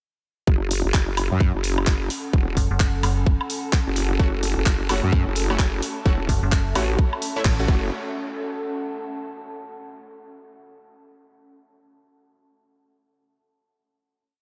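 A four-on-the-floor electronic kick, tight and up front, drives this aggressive, swaggering bass house piece at 129 BPM in F# minor, with a 16th-note swing of 61% giving the programmed hats and backbeat a loose garage shuffle of handclaps, open hat and a high woodblock. The whole piece is a short drop running from 0.5 to 7.9 seconds, anchored by a nasal, resonant vowel-sweep wobble bass whose formant-filtered phrases change wobble speed, thickened with chorus and overdrive and pumping against the kick. A metallic FM bass cuts in with chopped, decaying phrases at 2.6 seconds and again later, described as answering the other bass, its digital edge roughened by tube saturation. Bold, punchy orchestra-hit-like sawtooth stabs arrive at 4.2 seconds, firing syncopated chords that move one shape in parallel, bright and detuned with a noise layer, reverb and analog delay. Behind it all, a warbling, nostalgic lo-fi pad with a slow attack drifts through slowly shifting chords, then carries the final F# minor chord on its long release to the close, the mix sitting in light digital ambience.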